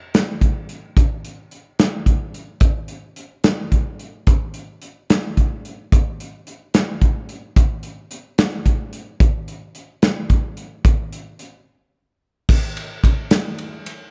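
A modern acoustic studio drum kit sits up front in this intricate, wistful rock excerpt, moving in a straight 6/8 at 73 BPM counted in dotted quarters, with punchy kick, medium-tuned snare, hi-hat, ride and crash cymbals heard in a pumping studio room under light reverb. The kit enters at 0.1 seconds, plays a brief break at 11.7 seconds, then moves into a new section at 12.5 seconds before the cut at 14.0 seconds.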